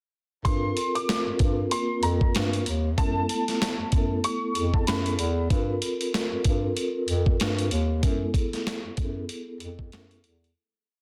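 Boom-bap hip hop at 95 BPM with a swung 16th-note feel and a dark, tough mood, built on a gritty, compressed sampler-style kit with a thumpy kick, a high-tuned layered backbeat snare and hi-hat, alongside a punchy bass clarinet playing a deep, jazzy looped bass line with vibrato, muted ghost notes and slides. A worn, woody, slightly detuned upright piano loops a short high melody through tape echo from 0.4 to 5.2 seconds, while a vibraphone with soft mallets repeats chopped, ringing, mellow chords with fast motor vibrato and a cassette-tape colour. The chords move between Gm11 and F#m11, the sound is dry and densely limited, and the piece fades out from 8.0 seconds.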